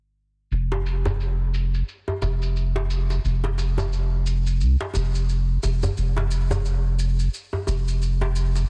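A round, deep analog synth bass anchors this short fragment of a longer organic downtempo piece. It enters at 0.5 s and sits up front between F1 and C2, its nasal, dark tone carried by a filter sweep throughout. The mood is mystical and earthy, set at 88 BPM in 4/4 with a 59% swing on the sixteenths. A tight, cracking djembe joins at 0.7 s, acoustic yet compressed and saturated. Further back, a layered electronic shaker with a tape-warm, low-passed character sounds as if re-recorded in a small room. The mix is dry and heavily compressed, giving it a radio-like sound until it cuts off at 8.7 s.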